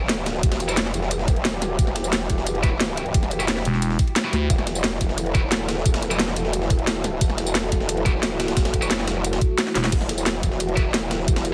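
Aggressive and mechanical, this dark technical drum and bass excerpt drives a wobbling, saturated growl bass and a knocking electronic kick alongside overdriven drums with a cracking snare and bright hats, while a very quiet, gritty breakbeat kit sits beneath. A moody sawtooth pad holds sustained chords with sidechain pumping, double-tracked high-gain guitar stabs with digital delay sit in the background, and a thick FM bass growls briefly at 3.7 and 9.8 seconds, all through a heavily compressed radio-like sound.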